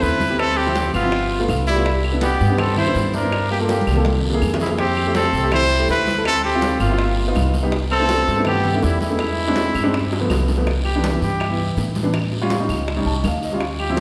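Ringing congas, round low-tuned bongos, a raspy guiro and faint claves drive a lively, danceable Afro-Cuban jazz groove at 164 BPM in a straight 4/4, anchored by a thumpy, up-front pizzicato upright bass. A breathy trumpet carries the melody over a mellow tenor saxophone second line with vibrato and scooped notes, while a dark upright piano with short sustain comps through rich jazz chords. The saxophone drops out at 9.9 seconds, and from 10.7 seconds the music settles into C major as the trumpet takes a solo, all bathed in a lush, hall-like reverb in this excerpt from a longer piece.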